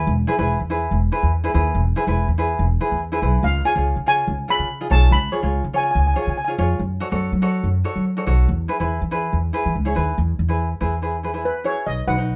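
Light reverb gives this short calypso excerpt a close sound, with tenor ukulele, upright bass and steel pan each placed up front. A light, fingerpicked acoustic ukulele and a woody, thumpy pizzicato bass on steel strings carry a carefree, festive groove through E, C#7 and F#m before returning to E. Over them, a shimmering, metallic lead pan struck with medium rubber sticks carries the melody from 3.4 to 6.5 seconds and returns at 11.5 seconds.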